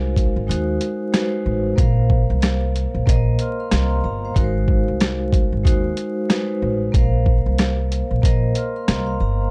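A swung 93 BPM boom-bap groove in 4/4 drives this moody, tough hip-hop clip, where a gritty, pitched-down sampler kit with thumpy kick, medium-tuned snare, rim click and hi-hat sits up front beside a woody pizzicato upright bass on gut strings and a ringing, metallic vibraphone with slow motor vibrato, all moving between Ab7 and Bbsus2 inside a dark, small-room production dusted with vinyl crackle.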